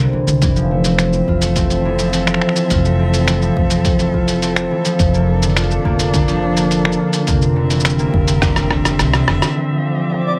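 Up-front, ringing fingerpicked concert harp arpeggios, softened by a low-pass filter and delay, lead this playful 105 BPM folktronica excerpt in F major, moving from Fmaj7 to C9/F over woody, thumpy pizzicato upright bass, a deep tape-warm electronic kick, and a muffled, pitched-down sampler kit of cabasa, finger snaps, hi-hat and rim click that plays a fill at 8.4 seconds, while a bowed string quartet holds quiet chords with vibrato, portamento and 12-bit grit, and a bright, twinkling granular shimmer sparkles in at 10.0 seconds.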